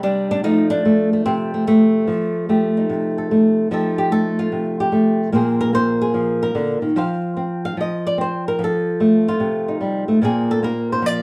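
Set in a small, reverberant room with a live feel, this playful, swinging solo jazz excerpt at 147 BPM in F mixolydian features an up-front, fingerpicked flamenco guitar with an acoustic, warm tone, moving through F9 and Bb9 harmonies before stepping into a nylon-string solo from 3.7 s.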